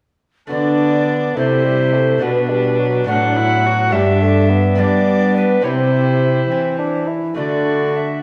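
A dark, warm stone-room reverb surrounds this short excerpt from a longer classical piece: a stately, courtly Renaissance-style consort dance in 6/8 at 70 beats per minute, counted in dotted quarters, with a straight feel in D mixolydian. All five players sound together from 0.5 seconds to about 8.2 seconds. An airy wooden alto recorder carries the melody up front, its tongued notes showing chiff and vibrato, while a bowed viola with gut-string tone and a smooth, reedy top plays a quieter second line beneath it. A mellow bassoon adds accompaniment with light vibrato, and a bright, delicate lute fingerpicks double strings in the background. A rich, close cello anchors the bass up front, and the harmony moves through D, Bm, G and C before returning to D at 7.4 seconds.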